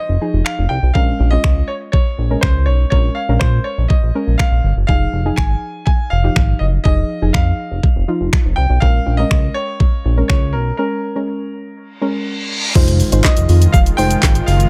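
Dry, up-front production carries this confident, driving dance-pop passage: a clear concert grand piano melody with dub echo rides over a dark, chorused pluck and a glossy, pulse-width-modulated synth bass, both pumping against a knocking, woody-snared R&B drum kit with finger snaps and shaker, while a downlifter opens the track, a break at 10.8 s and a reverse cymbal at 12.1 s lead to an impact at 12.8 s, and there a smooth supersaw enters, joined shortly after by a very quiet, hollow group handclap.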